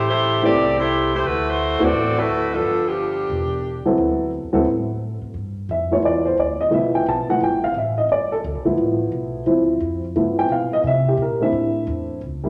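A dark, slightly detuned upright piano with audible action noise sits up front, comping from 0.4 s and taking a solo from 5.4 s in this energetic, joyful big band swing excerpt at 175 BPM in G mixolydian. A tight saxophone section carries the melody with vibrato and a smooth top until 3.9 s, while a woody pizzicato upright bass plays underneath throughout. A large studio reverb gives the sound a wet, roomy glow, and the harmony moves through rich chords like D13, G13 and C13.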